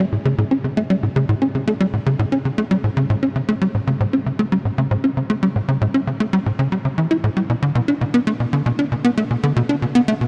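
A tight sequencer bass carries this mysterious, expansive ambient fragment by itself from 0.0 to 10.3 s, its punchy, wave-folded, saturated tone moving between A2 and E4 with a fast-attack filter pluck, a moving notch and a subtle chorus and delay. The tempo sits at a straight 116 BPM in 4/4, tuned to A4 = 438 Hz. A huge, wet ambient reverb with a 7.9 s decay surrounds the up-front bass in this clip cut from a longer piece.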